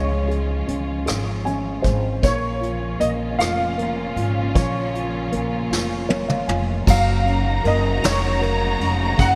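A grand piano with audible action noise carries the tender melody over a dark, woody upright piano, bowed symphonic strings with vibrato and a pizzicato upright bass, with brushed drums joining at 0.3 seconds in this swaying six-eight pop ballad at 52 BPM. The intimate grand piano has an ensemble chorus, the mellow upright piano adds fills, and the up-front brush kit, with dark cymbals and a punchy kick in gated reverb, plays a fill just before the harmony moves to Gb6. At 6.9 seconds a distant violin section enters with expressive portamento, and the piece sits in a lush hall reverb with bright 1980s-style digital production, cut from a longer work.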